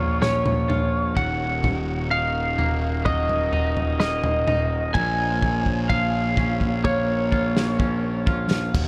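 Melancholic yet cathartic, this short post-rock passage from a longer piece moves through Bbm7 and Ebm. An up-front, slightly broken-up and compressed lead guitar sings the melody through digital delay, over clean, twangy picked arpeggios on a second electric guitar that also carries delay, while an intimate chamber string section holds soft-attack sul tasto chords with light vibrato in the background. A fuzzy, overdriven picked bass sits up front beside a loose acoustic indie drum kit with a tight kick, which enters at 0.2 s and plays a fill from 5.0 s, all in a light small-room reverb.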